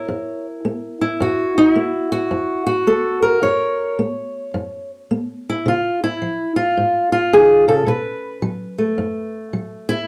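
Acoustic country blues with a rollicking, swaggering mood, moving at 108 BPM in 4/4 with a 64% swing on the eighth notes. A lone fingerpicked, ladder-braced acoustic guitar carries the whole piece, ranging from F#2 up to C#5 in F# mixolydian. Its tone is dark, woody and boxy, with the character of old strings, and it sits up front in the mix. The harmony rests on F#7 before moving to C# at 5.7 seconds and settling on B5 at 7.9 seconds. A moderate small-room reverb gives the instrument a close, intimate space in this short section cut from a longer performance.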